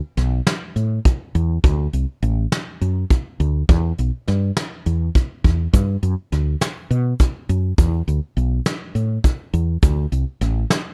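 Progressive instrumental band music in 7/8 at 205 BPM, bright and driving, with a round, woody fretless bass and a punchy brushed drum kit of hi-hat, kick and snare sitting up front in a dry, dark studio sound, joined at 5.7 seconds by a grainy egg shaker kept very quiet.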